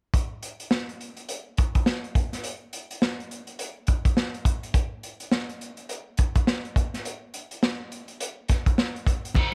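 A crunchy breakbeat drum kit drives this sly funk fragment, its kick, snare, hi-hat and crash cymbal carrying a swung sixteenth-note feel with a saturated, gritty tone, dark cymbals, a tight kick and a rolled-off top, placed up front in a small, dry room. Congas with a thick-skinned, soft-handed sound slip in only at 9.3 seconds, just before the kit stops at 9.5 seconds.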